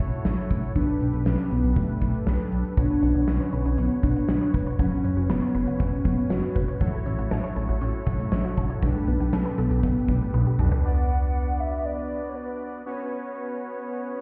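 Heard muffled as if through a wall in a stony room, this cool, nocturnal synth-pop excerpt in B minor at 119 BPM sets a huge arena drum kit with a punchy kick and fat snare against a dark, glossy chorused synth bass, bold warbling analog synth brass, a hollow, woody clarinet-like lead with vibrato and tape echo entering at 0.8 seconds, and squelchy resonant blip-pluck arpeggios with phaser sitting in the background, before a drum fill at 10.3 seconds hands off to a closing passage where the brass carries on to 14.2 seconds.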